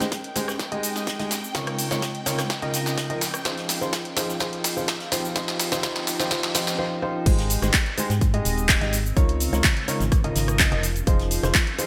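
An intimate grand piano with audible action noise carries the riff up front in this euphoric, uplifting piano house excerpt at 126 BPM in Ab major, its deep low end softened by a low-pass filter and touched with subtle chorus, digital delay and sidechain pumping over chords such as Abmaj7, Db69, Fm7 and Eb7. An overdriven analog drum machine with a punchy snare, handclaps, hi-hat, cabasa, rim click, crash and gated reverb drives a build-up and drum fill, layered with a produced electronic kick, a very quiet brushed acoustic kit and a cloudy, evolving granular pad, while shimmering vintage sawtooth string-machine violins sustain in the background until 6.8 s. After a brief break, the drop arrives at 7.3 s as a hollow, dark, organ-like FM bass enters, pumping under a bright 1980s-style digital production set in a moderate, lush hall reverb.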